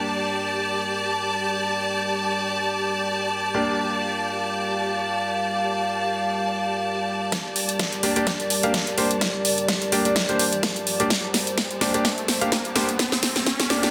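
Bouncy and swaggering, this swung bass house excerpt in G minor opens on a single chord, with a dark, nasal analog pad and clear, short piano stabs pumping under filter sweeps beside lush, up-front bowed strings, before a punchy but very quiet electronic kick and a kit of huge snare and metallic hi-hats break in with a drum fill at 7.3 seconds to start a build-up, joined by a background riser from 9.1 seconds, all in a moderate room reverb.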